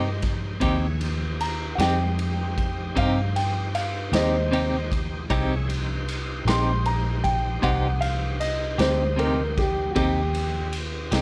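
A woody, polished upright piano takes the solo in this brooding, soulful slow blues in C minor, moving at 51 BPM in a straight 12/8. The piano drops out at 10.7 seconds of this fragment cut from a longer piece. Beneath it, an up-front clean electric guitar with tremolo and a round, foam-muted fingered bass carry the accompaniment, while a bright, shouting tonewheel organ holds sustained chords with light overdrive, key click, chorus vibrato and a slow rotary speaker; a raw, gritty garage kit of punchy kick, ride and medium-tuned snare enters at 0.2 seconds in a pumping stone room, and the dry recording carries the wear of warbling old cassette tape with drifting pitch.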